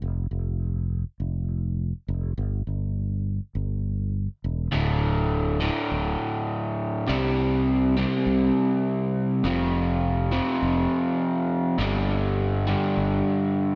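A straight 4/4 pulse at 102 BPM drives this brooding, cinematic post-rock passage in D minor, where a punchy, up-front fingered electric bass builds tension on its own until an overdriven, double-tracked electric guitar enters at 4.7 seconds with a compressed, picked riff steeped in spring reverb over D5, C5, F5 and G5, the bass stopping at 13.2 seconds while a lush hall reverb lends the room a big arena sound.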